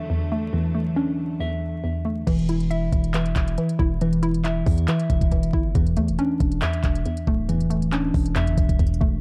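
A hollow, chorused square-wave pluck and a clean, mellow electric guitar playing delayed arpeggios open this melancholic, menacing trap excerpt, over a veiled, muted string section that holds soft sustained chords until 2.2 seconds. At 2.3 seconds a punchy, heavy 808-style bass and an up-front trap kit arrive in a half-time feel, with a knocking kick, crisp hi-hats, handclaps and crash cymbal. The dry, dark production carries a layer of vinyl crackle.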